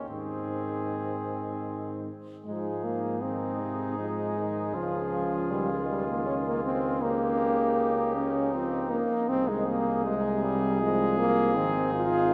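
A warm, straight 3/4 pulse at 79 BPM carries this triumphant classical brass quintet in Ab major, where a close-miked cornet carries the melody over a trumpet with light vibrato in the background, an up-front French horn with a smooth top and soft attack, a distant, roomy euphonium with vibrato, and a mellow tuba anchoring the bass, all set in a wet church reverb as the harmony moves from Ab through Db and Eb7/Db to Ab/C and Fm7/Ab.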